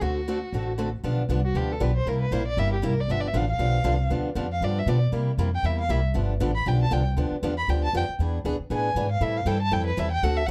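A charming, playful stretch of acoustic string swing in the jazz manouche style opens with violin, picked steel-string guitar and upright bass all sounding together at a brisk 235 BPM in 4/4, with a lilting swing on the eighth notes and a home in G mixolydian. The bass sits boldly up front, its pizzicato gut strings giving a woody, thumpy pulse. The bright, boxy parlour guitar supplies the accompaniment, moving through dominant seventh chords such as G7, C7 and E7 before reaching Am7 near the close. From 1.0 s the single bowed violin takes a solo, singing with a warm, smooth top, expressive vibrato and gliding portamento. Light reverb and a dark, warm production round out this short portion cut from a longer piece, which ends at 10.5 s.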